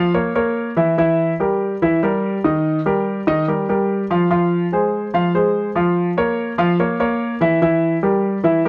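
Latin solo grand piano at 145 BPM in 4/4 with a sultry, danceable mood. The intimate, up-front piano has short sustain and audible action noise, and it moves through Bbm, Edim, Eb and Fm across this 8.7-second cut from a longer piece, set in a moderate studio ambience and colored by the worn, warbling pitch drift of old cassette tape.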